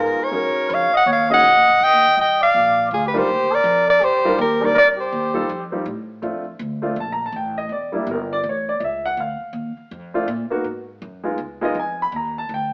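A soprano saxophone with scooped notes carries the melody up front over a dark, distant trumpet with light vibrato in this relaxed, swinging small-group jazz piece at 163 BPM in Bb major, while a polished baby grand piano and a woody, growly pizzicato upright bass carry on alone after the horns stop at 5.7 seconds, all heard live in a stone room with an AM radio tone in a fragment cut from a longer performance.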